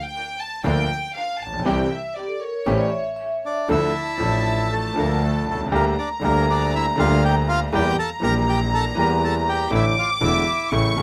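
A reedy, close-miked bandoneon carries the melody with tape echo from 3.5 s in this melancholic, sultry rubato tango fragment, after a floating, sul tasto violin section opens alone at 0.0 s and continues as a second line, joined by a deep-bass grand piano accompaniment, a biting, nasal bowed double bass, distant, lush string stabs with tape echo, and a brief, mellow, ringing vibraphone line on soft mallets, heard through a rough home demo mix with light reverb.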